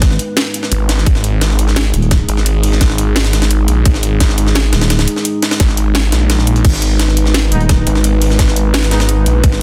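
Dark and futuristic, this slice of technical drum and bass sets a tight, overdriven electronic kick up front beneath a layered kit of cracking snare and bright hats, a gritty, pitched-up, tape-warm jungle sampler kit re-recorded in a small room, a thick growling FM bass that stops at 2.3 seconds and returns in brief bursts, a snarling, detuned saw bass entering at 0.7 seconds with tube saturation, a deep, moody wave-folded pad held on G#m with chorus, sampler grit and sidechain pumping, and a clear brass section stabbing through digital delay at 7.5 seconds, all in a dense, heavily limited modern master.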